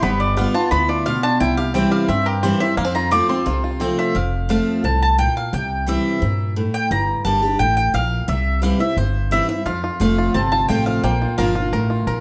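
Bluegrass with a driving, joyful straight feel, cut from a longer piece. The mandolin carries the melody up front with a woody, picked double-string tone, taking a solo over the opening 4.2 seconds while a bright, fresh-stringed steel-string acoustic guitar picks the accompaniment with a concert sheen. Beneath them the upright bass is plucked on gut strings, thumpy and close. The fingerpicked banjo adds twangy, percussive arpeggios set a little further back with a slapback echo, dropping out after the opening and returning at 9.7 seconds. The chords move through G7, C and F before turning to Gm and settling on F and Bb, all inside a large studio room with moderate reverb that gives the production a dark, warm cast.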